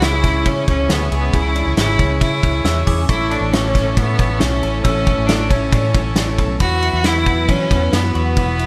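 Wistful and bittersweet, this jangly indie pop excerpt in straight 4/4 sets a clear, bowed solo violin with vibrato and tape echo up front, shadowed by a bell-like glockenspiel line struck with hard plastic mallets that carries its own tape echo. Underneath, a buzzy overdriven combo organ, a twangy clean electric guitar playing chorused arpeggios, and very quiet, mellow sawtooth string-machine cellos move through C#m, A and Esus2. A round, foam-muted fingered bass and a roomy indie drum kit with dark cymbals and a tight kick anchor the mix, which has light reverb and faint lossy compression artefacts.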